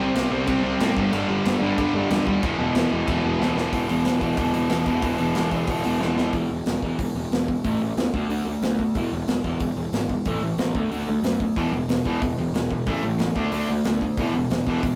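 A raw, urgent punk rock clip in E minor opens with three guitars playing riffs together over a growly, fuzz-overdriven picked bass, with the big, acoustic drum kit crashing in at 0.2 seconds at a driving 184 BPM in straight 4/4. The raw garage guitar sits up front with a warm, overdriven tone and runs the whole 15 seconds. Beside it, the cranked stack guitar adds a bright, picked edge, dropping out at 6.3 seconds and returning at 11.6. The distorted, double-tracked third guitar lurks in the background only through the opening stretch. The kit, with its punchy kick and medium-tuned snare in a studio room, throws in short fills before each change, and the chords settle into a churning A5, D5, E5 cycle in the later part. Light reverb and saturation give the whole thing the rough feel of a rehearsal-room take.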